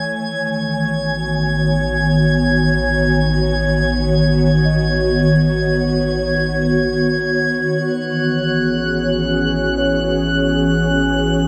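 Warm and weightless, this ambient fragment from a longer piece floats in free time inside a dreamy, reverb-soaked hall, led by an ethereal, airy pad of detuned sustained chords sitting up front with ensemble chorus. A very quiet, bell-like celesta, slightly out of tune and close-miked, plays delicate arpeggios, a glassy texture of drifting overtones hovers, and a round, deep analog bass holds a low A1 that fades out across the 11.5 seconds. The harmony rests on Badd9 over A before shifting to C#m over A at 7.7 seconds.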